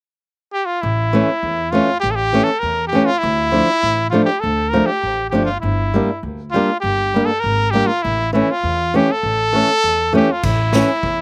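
The recording is dry and open-air, with little reverb and an outdoor feel, and this short cut from a longer piece has a soulful, festive mood. It is a klezmer tune in A phrygian dominant at a straight 100 BPM in 2/4. A bright, up-front cornet carries the solo melody from 0.5 seconds in a pop style, its light vibrato sitting close and present. Beneath it, a dark, fingerpicked flamenco guitar supplies acoustic accompaniment while a woody, pizzicato upright bass with steel strings adds a warm low end, moving through A, Dm and Gm before returning to A. At 10.4 seconds a street-band drum kit arrives with a boomy kick, a medium-tuned snare and dark crash cymbals, its polished, airy sound carrying a big-room quality as the passage closes at 11.2 seconds.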